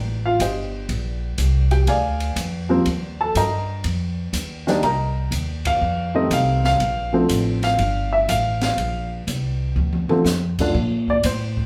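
A plucked upright bass with steel strings opens this cut from a longer jazz piano trio. A slightly detuned, woody upright piano with short sustain carries the melody from 0.3 s, and an open acoustic drum kit follows with dark cymbals, a high-tuned snare and a boomy kick. The mood is playful and warm at a swung 122 BPM in Bb major, moving through Cm, Bb7 and Eb toward a Cm7–F7 turn that settles on Bbmaj7, with a band accent at 5.6 s and a drum fill near the close, all heard as a band playing together in one room with large studio reverb and the bass and piano up front.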